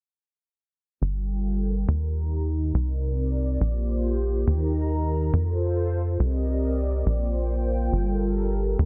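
Light reverb and a digital ambience sit around a dense, heavily limited modern master in this short trance fragment, its bittersweet, driving mood carried by a straight 4/4 pulse. From 1.0 s to 8.9 s, a filtered supersaw swell holds sustained chords. Its detuned unison sawtooth layers have a soft attack and an evolving, mellow character, colored by a phaser and a low-pass filter, with a filter sweep running across the supersaw throughout. Underneath, a tight sequencer bass sits up front over the same span, blending sawtooth and square-wave tones into a punchy filter pluck with a fast attack and a decaying tail. The harmony moves through Gm7, Eb, Cm7, Bb6, Eb, F, Cm7 and Bb6 before settling back on Gm7, giving the passage its blend of melancholy and momentum.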